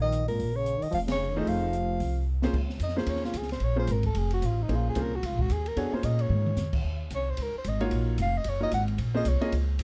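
A breathy, whispered soprano saxophone leads this smoky, cool fragment of small-group swing and bop, its vibrato full of scooped notes, and it takes a solo from 2.5 seconds onward. A mellow trombone adds a second line only until 2.3 seconds, while an intimate grand piano with audible action noise accompanies over a woody pizzicato upright bass that sits up front. The band hits an accent at 1.1 seconds, and an open drum kit with dark cymbals, a high-tuned snare and a boomy kick plays fills at 2.3 and 6.3 seconds, all inside a warm production with light reverb.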